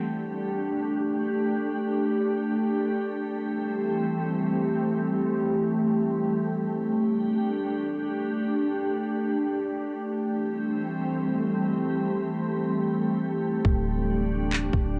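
Ethereal and melancholic, this atmospheric cloud-rap fragment from a longer hip hop piece drifts in free time. A glassy FM pad carries it from start to finish, holding sustained chords that shift between Dsus4 and Am7, its slow attack and long release softened by ensemble chorus, built-in reverb and a cassette-tape character. A Celtic harp rings faintly under the opening 0.6 seconds, its fingerpicked melody barely audible. At 13.6 seconds a trap drum kit arrives with handclaps and a hard-clipped kick, tape-warm and up front, while the hi-hats stay muted. A soft, round 808-style bass enters at the same moment on a deep, dark D1, its fast attack decaying beneath the pad. The home cassette recording sits in light reverb, its top end dull and capped at 10.4 kHz.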